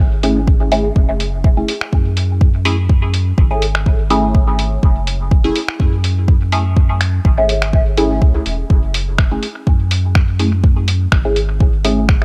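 This hypnotic, meditative dub techno at 124 BPM in F# minor opens on a round, soft sub bass pumping under sidechain. At 0.2 s it is joined by a muffled lo-fi sampler-style kit of finger snaps and hi-hat trailing dub echo, and by a dark, nasal sawtooth chord stab on F#m7 that carries phaser, dub echo and sidechain pumping and gets a filter sweep from 8.7 s. An up-front, deep electronic kick lands at 0.5 s, all set in a dry mix.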